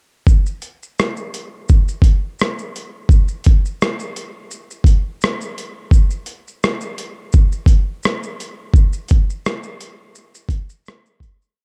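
A sampler-style boom bap drum kit carries this short hip hop piece on its own, playing from 0.3 to 11.6 seconds with kick drum, hi-hat, rim click and shaker. The kit sounds gritty and compressed, with a thumpy kick and a tape-warm character, and it sits up front as though re-recorded in a large room. It is a soft beat in 4/4 at 85 BPM, with shaker sixteenths that carry a gentle swing. The overall production is dark with little reverb, giving the piece a hazy, melancholic mood. A fade-out begins at 8.7 seconds and runs to the end.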